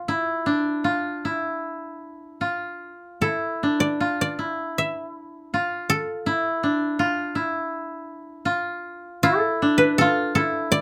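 Two kotos sound together from the very start, opening a still, meditative passage of Japanese chamber music cut from a longer traditional piece. One koto carries the melody between F4 and E5, while the second plays a lower supporting line from D4 to F4, both continuing through to 10.8 seconds. Both instruments are played with fingerpicks and sit up front, with a dry, woody tone and a gentle warmth. The music is in the kumoi mode on D, in 4/4 at roughly 74 to 83 BPM, and it moves with a free, rubato feel. Close, detailed microphones catch the grain of the strings, and a light reverb adds a touch of air around them.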